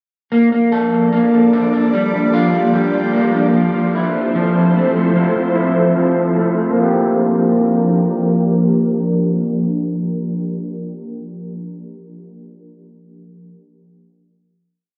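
A half-time feel at 149 BPM in 4/4 gives this short, hazy and ethereal cloud-rap piece in G dorian its drifting pulse. A dark, slightly broken-up electric guitar enters at 0.3 seconds with a fingered eighth-note arpeggio, repeated like a sampled loop and coloured by lush chorus and analog delay. At 0.8 seconds a detuned, airy pad joins with slow-attack sustained chords, thickened by ensemble chorus and its own reverb. The harmony moves through Bbmaj7, Gm7 and Fmaj7 before settling on a final Gm7 at 6.8 seconds, all within an echo-heavy, low-pass-filtered mix with moderate spring reverb.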